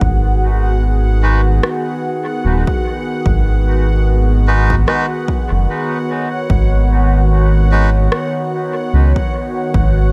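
Ambient dub with a hazy, deep mood, cut from a longer piece, where a round, dark analog bass with tube saturation sits up front beneath a warbling, lo-fi pad of sustained chorused chords on G#m7, a punchy overdriven electronic kick, a bubbling, resonant stepped-filter texture high above, and, from 1.2 s, reedy, breathy melodica stabs joined at 1.6 s by an electronic rim click, both trailing dub echo in an echo-heavy mix.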